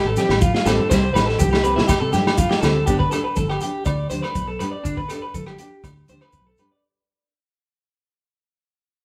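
Carefree and danceable, this short highlife guitar band excerpt at 122 BPM in G mixolydian opens with a bright, twangy electric guitar arpeggiating up front over round, foam-muted fingered bass. At 0.2 seconds it is joined by a full-bodied fingerpicked nylon-string guitar with audible finger squeak, a muffled lo-fi vintage drum kit with hi-hat, tight kick, rim click and snare, soft-handed congas and grainy close maracas, with ringing agogo bells entering in the background at 0.3 seconds. All of it is played live in one large reverberant room, moving from Fadd9/A to C before settling on G as the music fades out from 2.9 seconds.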